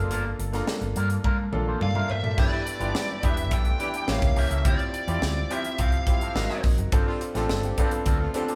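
A brilliant grand piano, a twangy envelope-filtered guitar riff and a round, dark hollow-body bass open this glossy, urban 1980s jazz-funk pop excerpt, joined at once by an up-front fusion kit with a punchy kick and high-tuned snare that plays a fill from 1.2 to 2.4 seconds. A nasal, overdriven lead guitar with a parked wah carries the melody from 1.8 seconds, while a clear horn section with light vibrato and a soft attack adds a second line in the background from 2.5 seconds. The band sounds as if playing live together in a moderately reverberant stone room, moving through jazzy chords such as Gm7, A7b9 and Dm11.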